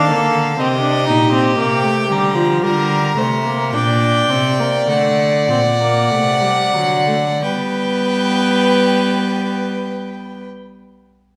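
A string quartet opens together on a solemn, driving baroque-style fugue: the first violin carries the melody on top with light vibrato, the second violin adds a reedy second line, the viola fills in an airy, nasal accompaniment, and the cello anchors the bass up front with a rich gut-string tone. The music slows through its first 7.4 seconds as the harmony moves from Bb through Cm and Gm to D7, then arrives on G as a new section begins. Bowed in period style and heard close within a reverberant recital hall with a faint mains hum, this is a brief passage cut from a longer piece.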